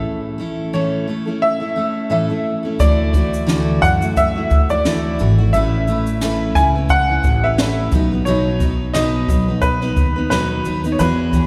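Sunny and heartfelt, this acoustic pop excerpt moves at 88 BPM in 4/4 with a light sixteenth-note swing, set in the wet, lingering reverb of a church. A full-bodied jumbo steel-string guitar, picked up front with audible finger squeak, and a woody, dark pizzicato upright bass open together, joined at 0.7 seconds by a clear, slightly detuned upright piano carrying the melody with long sustain. At 2.8 seconds, after the opening break, a brushed jazz kit with a high-tuned snare, punchy kick and shaker enters as the chords move from A through Dadd9 and Aadd9 to B.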